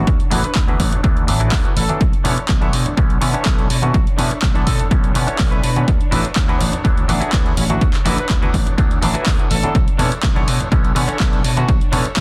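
Sensual and groovy, this filtered disco house excerpt rides a filter sweep throughout, with an up-front overdriven electronic kick, a punchy analog drum machine's handclaps and pumping hi-hats, very quiet ringing tambourine and congas, a warm amped slap bass, a twangy phased clav, a bright direct-recorded clean guitar riff with tremolo entering at 0.3 seconds, lush dark sul tasto strings holding chords and a brilliant background horn melody trailing dub echo, all over a dense, heavily limited mix that moves between D69 and Bm11.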